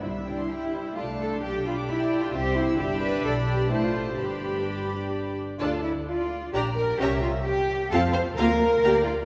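This quick classical-period movement for string orchestra, cut from a longer piece, moves at 130 BPM in a straight 3/4, spirited and lively, and is tuned to A4 = 439 Hz. A dark, intimate cello section sits close and up front with light vibrato, while the double bass section, smooth at the top, anchors the low end and a distant viola section fills in the accompaniment. A rich violin section carries a floating second line high above, and a warm violin melody with a pure, soft-attacked tone enters at 0.5 s but stays in the background. Every section plays bowed and sul tasto as the harmony moves from C through G and A minor to D minor, a C7b9 and F, reaching Bb/D at 8.4 s. A wet concert hall reverb with a 2.5 s decay surrounds the ensemble.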